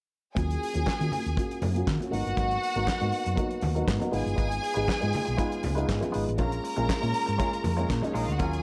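A straight 4/4 disco groove at 120 BPM sets a sultry, glamorous mood in this short excerpt cut from a longer piece, with a filter sweep running through its single section from 0.4 to 8.6 seconds. A damped 70s drum kit drives it with a fat snare, tight kick, hi-hat and handclaps, its dry, rolled-off top sitting close, while very quiet, low-tuned congas with a ringing, saturated tone and soft hands add percussion beneath. A round, dark hollow-body short-scale electric bass, fingered and amped, carries the low end from G1 to D#3 as the loudest part. A mellow baby grand piano with short sustain and a filtered, twangy clean electric guitar, picked and compressed in the background, share the accompaniment in the middle register. Above them a lush studio string section, bowed with vibrato and a smooth top, plays a focused second line reaching up to A#5. The harmony moves through D#m9, G#m9, a rootless C#9 and A#m7, all set in light reverb and a small room ambience, with tuning at A4 = 436 Hz.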